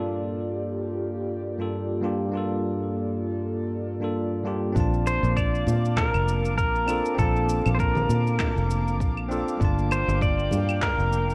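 Blissful and smooth, this sunset chillout piece at 99 BPM in Bb major, with a swung 16th feel, opens on a bright, bell-like tine electric piano with tape echo over a breathy, chorused pad. At 4.8 s a foam-muted fingered electric bass with tube saturation, a deep electronic kick and low-pass-filtered shaker, claves and handclaps arrive, joined at 5.1 s by an up-front pedal steel guitar melody played with fingerpicks and slide through tape echo, and at 5.7 s by distant, low-tuned congas, under a plate reverb and the warbly pitch drift of worn cassette tape.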